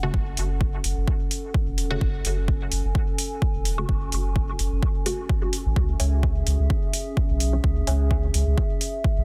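A dense, heavily limited modern mix with little reverb, this cavernous, nocturnal dub techno fragment is cut from a longer piece and moves with a lightly swung sixteenth-note feel in 4/4. A punchy, overdriven kick sits up front beside metallic, overdriven hi-hats, while a round, soft sub bass, a resonant, wave-folded chord stab carrying phaser and dub echo, and a warbling, lo-fi pad of detuned chords with chorus and its own reverb all pump under sidechain through a single chord change at 5.8 s. Between 6.0 and 7.9 s a muted, evolving second stab riff appears in the background with chorus and echo, and a filter sweep runs on the synth stab throughout.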